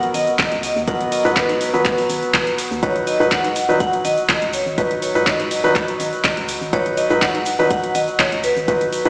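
The sound is wrapped in a lush hall reverb, then heard as if played through a big sound system in a bare stone room, coming across with a small-speaker sound. This hypnotic, deep excerpt of deep house moves in a straight 4/4, resting on G#m9 before shifting to B/G# at 2.8 seconds. An up-front, felt-muted upright piano plays soft, mellow stabs with audible action noise and short sustain, while a deep house drum kit with metallic hats and handclaps sits equally forward. A vibraphone struck with hard mallets carries the ringing melody, its medium motor vibrato smooth and dark, trailed by tape echo. Beneath them, a hollow, organ-like FM bass with a fast attack pumps against the sidechain, and an electronic kick drum enters at 0.4 seconds with a tape-warm thump. A grainy, bright egg shaker stays close yet in the background.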